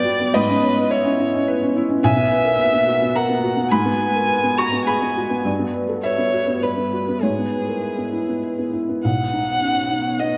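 A felt-muted upright piano and a muted violin open the music together, the piano soft and intimate with its action noise audible up front, the violin dark and veiled, played con sordino by a single bowed player. This is a hopeful, tender neoclassical piece for piano and strings in B major, moving in a rubato 3/4 at roughly 98-108 BPM. The violin carries the melody with vibrato, portamento and a smooth top, while the mellow piano accompaniment spans from deep bass up into a high register. In the background, a warbly, nostalgic, lo-fi pad holds sustained chords with a slow attack, its detuned sawtooth and triangle tones given a vintage colour by chorus and built-in reverb. The harmony drifts through chords such as G#m7 and Gmaj7, and a new passage arrives at 9.0 s on Badd9. A wet concert hall reverb surrounds the whole, and the excerpt is cut from a longer piece, ending at 10.4 s.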